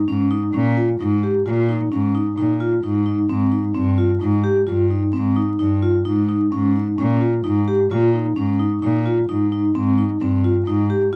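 Contemporary chamber music in an uneven 7/4 metre, this hopeful, shimmering excerpt pairs a mellow, ringing vibraphone played with soft mallets and medium motor vibrato, spinning arpeggios up front, with a single bowed cello whose rich, earthy, slightly nasal tone and light vibrato carry the bass line, as the harmony moves between an Eb7 chord over Ab and C minor in a dark production with vinyl crackle and a modest booth ambience.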